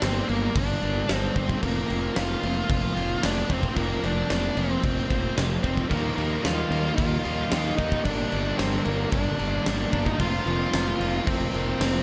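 This 12-second excerpt moves at a straight 112 BPM in 4/4, driven by a huge arena drum kit with a punchy kick, medium-tuned snare and bright crash cymbal sitting up front in a big, natural room. The mood is melancholic and hazy, a shoegaze and dream pop take on rock, with chords moving from Gmadd9 through Fsus4 to Ebadd9 and Gm. A dark, round fuzz bass anchors the low end, while an octave-fuzz lead guitar carries the melody up front, its distorted tone trailed by tape echo. Beneath it, a very quiet crunchy overdriven guitar and a double-tracked, hollow-body semi-hollow guitar play riffs, and a twangy clean electric guitar picks arpeggios. At 5.9 seconds a second crunchy overdriven guitar joins in the background with a reverse reverb riff, and the whole mix sits in light studio reverb.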